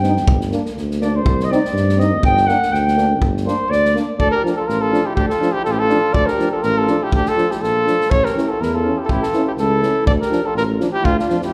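Bittersweet and fiery, this Balkan brass band fragment swings lightly in a two-beat metre. For the first 4.2 seconds a warm flugelhorn with light vibrato takes a solo turn, sounding distant and roomy as the harmony moves from G minor to C minor and back. A mellow cornet then enters up front with the classical-style melody, while the flugelhorn carries a second line and the chords turn to D minor, A and D minor. Beneath them a breathy, whispered trombone in a jazz style and a soft-attacked French horn sit in the background. A dark, close-miked tuba holds the bass, and an acoustic kit of punchy kick and medium-tuned snare drives the rhythm. A church or concert hall adds a wet, resonant reverb to the whole band.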